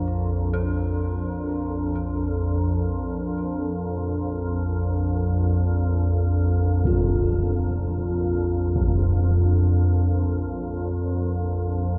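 The recording sits in a huge, wet reverb and sounds like worn cassette tape, with warbly pitch drift and a dull top end. This ominous, desolate dark ambient drone moves in free time, tuned to A4 = 442 Hz and built on a Bb chord. Up front, a calm organ-like drone of detuned sine voices in unison holds low from Bb1 to F2 for the whole 12 seconds, thickened by ensemble chorus and its own reverb, while a filter sweep shapes it. Behind it, a dark, detuned FM synth bell plays eerie, inharmonic arpeggios between F4 and A4 with chorus and delay, fading in until it stops at 6.9 seconds. A huge, bright impact under a low-pass filter strikes at 6.8 seconds. Then a bronze singing bowl rings on F4, close-miked and dry, its metallic tone beating slowly and meditatively through to the end of this fragment of a longer piece.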